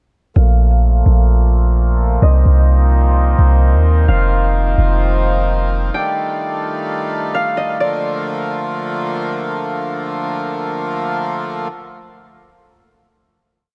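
A deep, boomy 808-style bass stands out at the front of this short, dreamy piece of atmospheric cloud-rap, holding long sub-bass notes with pitch slides before it drops away at 5.9 seconds. Set at 129 BPM in 4/4 with a half-time feel in Bb major, the piece drifts through a blissful breakdown over chords moving from Cm7 and F7sus4 to Ebmaj9#11, with a filter sweep running until 7.8 seconds. A hand-pumped harmonium sustains reedy, breathing chords as an up-front pad under a low-pass filter, carrying on into the final Bbmaj7 chord. Above it, a concert harp plays a sparse, thumb-plucked looping melody that repeats like a sample, its ringing tone softened by a low-pass filter and touched with delay. Light reverb and a small room ambience give the sound a gentle, intimate space.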